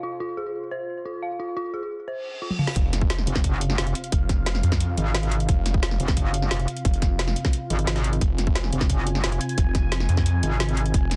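Mechanical and tense, this dark technical drum and bass excerpt opens on a bright, evolving resonant pad with sidechain pumping, an eerie, inharmonic synth bell with delay and a lo-fi, warbling tape-like pad in the background. A reverse cymbal and sub drop then build, and a drum kit with a woody snare and metallic hats enters with a fill at 2.5 seconds, leading into the drop at 2.8 seconds. There a tight, overdriven electronic kick and a snarling, growling distorted saw bass join in, and a wobbling FM bass with tube saturation follows at 3.3 seconds, driving a dense, heavily limited mix.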